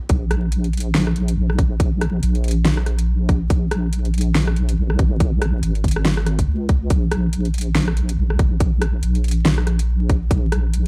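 Vinyl crackle sits over a dry mix in this brooding, dark excerpt of half-time deep dubstep with a swung feel, where a detuned, chorused wobble bass of sine and triangle tones hums deep and sustained beneath a tight, tape-warm electronic kick and an overdriven deep house kit of fat snare, rim click and metallic hi-hats, both drum parts touched by studio reverb.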